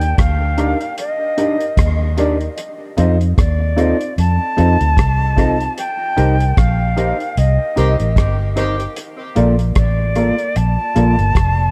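This laid-back, uplifting roots reggae excerpt opens with a reedy jazz flute carrying the melody over a round, foam-muted electric bass and a cloth-damped, thuddy drum kit of hi-hat, tight kick and rim click, with the bass and drums sitting up front. The flute is airy and tongued, with vibrato and rolled-off highs. Tape echo trails the flute, the drums and a clean, fingered electric guitar that enters at 0.4 seconds with mellow accompaniment. Just after, a woody upright piano adds dark stabs from the background, intimate and slightly detuned, with audible action noise. The chords move from Ebmaj7 through F7 and Cm7 to Bbmaj7, and a band accent runs from 5.8 to 9.0 seconds, during which a distant, roomy horn section plays a brief jazz-style second line, also echoed on tape, in a light reverb.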